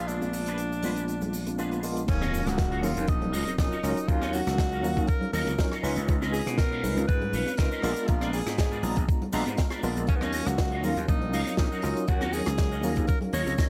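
A breathy, whispered tenor saxophone leads this cosmic, sensual nu-disco excerpt in Eb minor at 120 BPM, its scooped notes and vibrato carried on an analog delay over a Bb7b9 chord. Beneath it, a dark, picked electric guitar works an envelope-filtered riff with ensemble chorus, while a gritty, growly slap bass drives through overdrive and a worn, slightly out-of-tune tine electric piano adds tremolo, 12-bit sampler grit and sidechain pumping. An unplugged drum kit played with bundle sticks, airy with dark cymbals, sits alongside very quiet egg shaker and hard-handed congas, all with a lightly swung sixteenth-note feel. At 2.1 seconds the drop arrives with a thumpy, up-front electronic kick and a background impact, as the harmony moves into Ebm9, Db9 and back to Bb7b9 before returning to Ebm9. Short clean electric guitar fills surface at 9.3 seconds and again near the close, all within a small room ambience.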